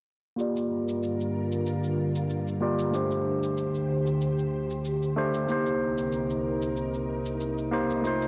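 An overdriven tine electric piano sits up front, its gritty tone pushed through a combo amp, softened by a low-pass filter that sweeps across the whole 8-second clip, and trailed by tape echo. A soft string machine enters at 0.7 s with silky, warbling sustained chords built from pulse and sawtooth waves, their slow attack and long release thickened by ensemble chorus. A quiet, layered electronic cabasa provides the drums, moving with a gentle sixteenth-note swing. The harmony drifts from Gm7 to D7sus4 to Cm7, giving this sunset chillout fragment a wistful, relaxed mood. A lush hall reverb bathes the dark production in a long, wet tail.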